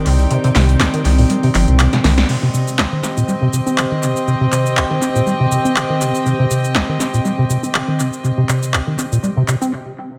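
Hypnotic and trippy, this acid house excerpt rides a rubbery, resonant acid bass riff with filter sweeps over a punchy electro analog drum machine with metallic hats and handclaps, while a warbling, lo-fi pad sustains dark chords, a distant chamber string section adds reedy bowed texture, a thick saturated sub bass and a very quiet acoustic jazz kit drop out by about 2.2 seconds as a drum fill plays, and the echo-heavy mix stops at 9.7 seconds.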